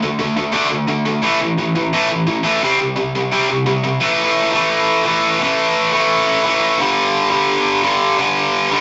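Rebellious and rowdy, this short punk excerpt from a longer piece charges ahead at 173 BPM in a straight 4/4. A single electric guitar carries the whole passage alone, picked, distorted and double-tracked, sitting up front with a tight, bright bite. It moves through power chords on D, A, C, A and G, shifting into a second section at 4.0 seconds before the clip ends at 8.8 seconds. The sound has the rough character of a rehearsal room, with a moderate booth ambience and a warm saturation that rounds off the top end.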